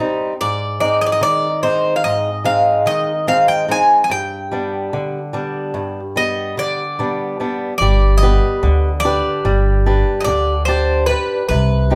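A straight 9/8 pulse at 146 BPM in eighths drives this melancholic, dark Greek folk excerpt, where a bright, metallic bouzouki with double strings carries the picked melody over a woody, boxy fingerpicked swing-style acoustic guitar with old strings, joined at 7.8 seconds by a pizzicato upright bass with steel strings, all three up front as a band playing live in one room with a moderate large studio reverb, the harmony moving from Ab to G.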